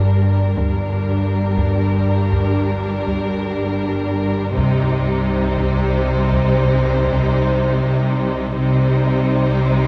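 Ominous and eerie, this brief suspense cue, cut from a longer film score, moves at a slow, straight pace through a dark minor shift between two chords. A bowed string section carries it. The violins sing a vibrato melody with a soft attack and a woody, distant tone, while a second violin line sits beneath it, rich and focused with a smooth top. Violas hold a single low note with expressive portamento, and lush cellos in the background join smooth double basses to form the foundation. From 0.1 seconds a softly malleted marimba plays a mellow, round riff, close-miked and dry. Between 0.6 and 8.0 seconds a taiko ensemble struck with hard sticks adds a very quiet presence, all within a wet concert-hall reverb and a dark production.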